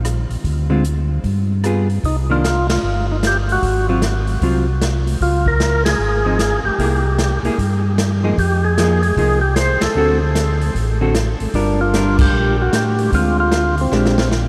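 A round, mellow tonewheel organ bass line with chorus vibrato and slow rotary speaker opens alongside an airy big-band drum kit with dark cymbals and a punchy kick, setting up a bluesy, greasy soul jazz organ trio swinging at 152 BPM in C minor, as a dark, picked hollow-body electric guitar comps from 0.7 seconds and a full, percussive lead organ with key click, slow rotary and delay takes the melody from 2.1 seconds through band accents and a closing drum fill at 13.9 seconds, all bathed in a dreamy, huge ambient reverb.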